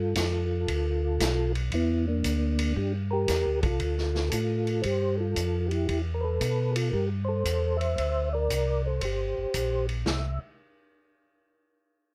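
Soul jazz organ trio with a greasy, swinging mood, moving at 115 BPM in 4/4 with a triplet swing on the eighth notes. A soft, flute-like tonewheel organ carries the melody between Bb3 and E5, its clean tone marked by second harmonic percussion, chorus vibrato and a slow rotary speaker, sitting up front. A second tonewheel organ handles the bass from G1 to B2 with a round, dark voice, audible key click and its own slow rotary speaker, also placed up front. A vintage acoustic drum kit of hi-hat, kick, ride and snare sits further back in a small, natural room, with dark cymbals, a punchy kick and a rolled-off top. The harmony moves from G9 through Gsus4, Dm, Fadd9 and open fifths, and light reverb ties this excerpt together before the chords drop away at 10.1 seconds.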